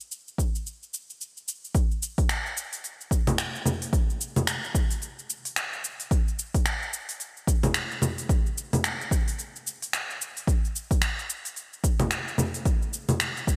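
A deep house drum kit opens this downtempo fragment, with congas, finger snaps, hi-hat and shaker sitting up front, its smooth hats touched by gated reverb. A punchy electronic kick joins at 0.4 s, slightly louder than the kit and also layered and close. The groove moves at 110 BPM in 4/4, with a 59% swing on the sixteenths that gives the percussion a loose, rolling feel. Both drum parts carry a small-room character, and a brief opening passage gives way at 1.7 s to a longer stretch that runs to the end at 13.6 s. Light reverb and a bright 1980s-style digital sheen shape the mix, lending this cut from a longer piece a mystical, warm mood.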